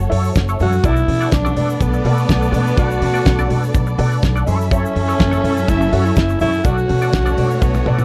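Danceable and sultry, this disco excerpt in B minor moves at 124 BPM in a straight 4/4, shifting between F#m7 and Bm7. A damped 70s drum kit sits up front with a fat snare and tight kick across hi-hat and toms, alongside a woody, thumpy pizzicato upright bass carrying the low end. At 0.6 seconds a breathy, raspy tenor saxophone takes the melody up front with vibrato and scooped notes, as low-tuned congas with hard hands enter very quietly. A clean, compressed semi-hollow electric guitar with wah supplies the accompaniment, a lush bowed violin section adds a second line, and a dark string section holds very quiet sustained chords. A grainy tube shaker sits in the background, studio reverb gives the production a warm glow, and a drum fill arrives at 7.6 seconds.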